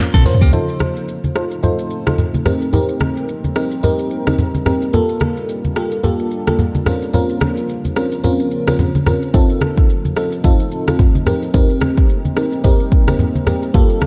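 A swung sixteenth-note afrobeats groove in 4/4 rides on an up-front deep house drum kit, its kick and metallic hats roughened by overdrive and 12-bit sampler grit, alongside thick-skinned, low-tuned congas, with a short drum fill opening the cut. Within the first half-second, a compressed, picked clean electric guitar with digital delay and a boomy sine 808-style bass appear only briefly, while from 0.3 seconds a lush, dreamy FM electric piano with chorus and phaser carries chords such as F7, Cm7 and Gm9 over a moody, detuned sawtooth pad with a slow attack, long release and built-in reverb. The mood is sunny and breezy, set in a dark, warm production with light digital ambience.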